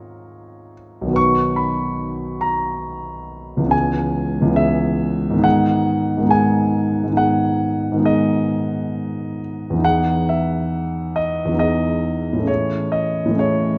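Moving in a rubato 5/4 at around 69 BPM, this short excerpt cut from a longer impressionist solo piano piece drifts rather than marches, its pulse bending freely in a mysterious, wistful G# minor. A lone concert grand carries everything from 0.0 to 13.8 seconds, ranging from a deep B1 in the bass up to A#6, and its tone is dark and mellow with a smooth, vintage character. The instrument sits up front and intimate, close enough that the noise of its action is audible beneath the notes. Rich extended harmonies shape the passage, opening on A#m11 over G#, then passing through Bmaj7, C#m7 and G#m7 before settling toward Emaj7 at 9.8 seconds and Amaj7 at 12.5 seconds. A moderate concert hall reverb with a 2.3-second decay surrounds the piano, lending the close, dark sound a sense of space.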